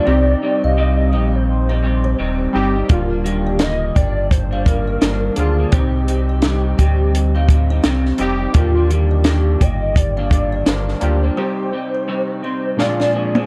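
Indie bedroom pop at 85 BPM with a lazy 16th-note swing, dreamy and nostalgic, where a warbling lead with vibrato and portamento carries the melody over slightly broken-up electric guitar through a small old amp, cassette-tinged analog keys and a woody kalimba ringing softly in the background, while a deep sine sub bass anchors the Cm to Ebmaj7 changes until 11.3 s and a dark, compact cocktail drum kit with a punchy kick enters at 2.9 s, closing on a break with a drum fill from 12.8 s over a Bb7.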